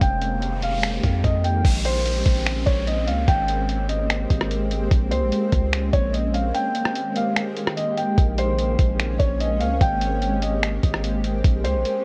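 Worn, warbling cassette tape with drifting pitch colors this dry, melancholic and ethereal cloud-rap fragment in Bb dorian, moving at 147 BPM in a half-time feel. A soft, felt-muted upright piano carries the melody with audible action noise and tape echo, over a dark, shimmering pad with an octave-up sparkle, chorus and sidechain pumping. A deep, sine-like 808 bass and a muffled, thumpy sampler-style kit of kick, rim click, snaps, hi-hat and crash sit up front, while an electronic noise sweep and downlifter enter at 0.4 seconds and a break runs from 6.5 to 8.2 seconds.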